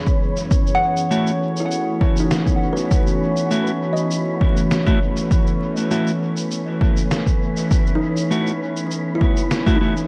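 A dark, hazy production with light reverb and a bed of vinyl crackle gives this ambient dub fragment, cut from a longer piece, a spacious and nostalgic air. A warbling, detuned tape-like pad sits up front from the opening, holding sustained chords with chorus and its own reverb, while an airy, breathy wind-like noise texture drifts in the background. An overdriven, punchy electronic kick anchors the straight 4/4 groove alongside a muffled, pitched-down sampler-style shaker and snare carrying small room ambience and dub echo. A woody, soft kalimba enters at 0.7 seconds with vintage-sounding arpeggios soaked in dub echo, and at 1.1 seconds a clean, fingered electric guitar adds dark stabs with the same echo. The harmony settles quickly onto a minor seventh chord, letting the layers float together in a lo-fi haze.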